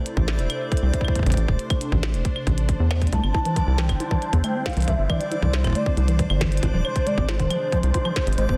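A tight, up-front electronic kick and a glitchy kit of claves, clicky hats and a tiny, soft-clipped snare drive this playful, intricate IDM fragment at 137 BPM in a straight 4/4, with a hollow, rubbery square bass bouncing underneath and a swirling, detuned analog pad, treated with phaser and chorus, holding chords that move from Am to Cadd9 to Ab. A reversed, dreamy texture swells in the background through its own reverb. At 3.1 s a velvety synth lead with portamento, chorus and tape echo enters alongside a deep, resonant acid bass playing arpeggios through cassette tape and digital delay, all set in light reverb and a dense, heavily limited modern master.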